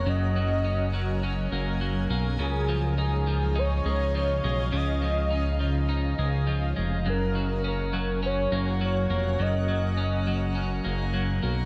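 A dream pop passage opens with all four parts sounding together, a floating, blissful mood carried on a straight 4/4 feel. A bright, clean twelve-string electric guitar plays picked arpeggios up front, its compressed tone touched with subtle chorus and dub echo. Beneath it, a fat analog bass holds the low end with a thick, mellow sawtooth-and-square character, detuned and ring-modulated, with a filter sweep shaping its sustained notes. A granular cloud pad spreads sustained chords across a broad range, blurred and evolving, with a slow attack, long release and its own built-in reverb. On top, a velvety synth lead sings the melody with smooth vibrato and portamento, colored by chorus and dub echo, and drops out at 10.6 seconds while the other parts carry on. The harmony moves from F# to C#add9 at 2.4 seconds and back to F# at 7.1 seconds, all set in an echo-heavy mix with light reverb.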